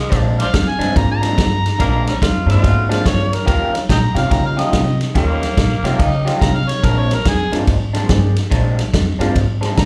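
A growling, raspy tenor saxophone with slapback echo and analog delay opens this rollicking, soulful electric blues shuffle, joined by a slightly broken-up, lo-fi guitar riff with phaser, a woody pizzicato upright bass and a punchy, up-front vintage drum kit of kick, snare and ride, while an overdriven, gritty harmonica carries the melody from 0.4 seconds with tongue slaps and scooped notes, a boxy, intimate grand piano accompanies in the background from 0.9 seconds, and the saxophone drops out at 6.3 seconds, the band heard live through a club PA with light reverb.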